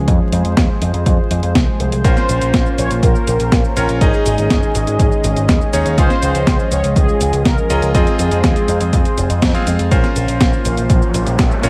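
Mellow synth brass carries the melody from 2.0 to 9.4 seconds, its round, detuned sawtooth tone darkened by a filter sweep and colored with vibrato, chorus and delay. This is a bittersweet, melodramatic italo disco excerpt in Bb minor at 122 BPM in a straight 4/4, moving through Fm, Bbmadd9, Absus4 and Db before returning to Bbmadd9. A punchy analog kick drum and an overdriven, sampler-style 12-bit drum machine playing cabasa, hi-hat and a medium-tuned snare drive the groove, both re-recorded in a small room. A picked electric bass with an envelope filter holds down the low end, while a smooth analog pad with a sub octave and slow attack sustains chorused chords underneath. From 2.0 seconds a bright electric grand piano adds cutting, clangy stabs with long sustain. After a band accent at 9.4 seconds, the closing section begins at 9.9 seconds, and a background riser builds within it from 10.6 seconds, all set in light reverb over a bed of vinyl crackle.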